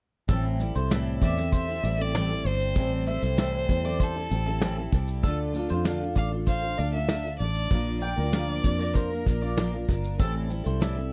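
Acoustic pop at 97 BPM, tender and wistful, this short excerpt from a longer piece moves through Am7, Dm and Bb over a dark, smooth brush kit with a tight kick, shaker and snare, and a round, foam-muted fingered electric bass sitting up front. A double-tracked picked steel-string acoustic guitar with audible finger squeak carries the accompaniment, while a mandolin adds quiet arpeggios on its paired strings. From 1.2 to 9.9 seconds a clear, even bowed violin sings the melody with vibrato and a slapback echo, all captured in a dry, close 1970s-style studio sound.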